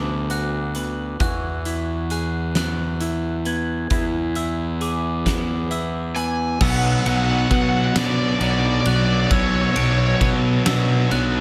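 This brooding, cinematic post-rock excerpt in 6/8 opens with a very quiet pedal steel guitar holding sustained slide chords with volume swells, while a bell-like glockenspiel and a twangy twelve-string electric guitar play arpeggios in the background, both touched with slapback echo, over a dark, round fuzz bass set up front. A huge arena drum kit with a fat snare and punchy kick enters at 0.3 seconds, and a small room reverb colours the whole. At 6.2 seconds a cranked stack guitar adds a bright, overdriven melody with slapback echo, and from 6.6 seconds, as the harmony settles on Bm, a thick fuzz guitar drives a distorted riff at the front of the mix.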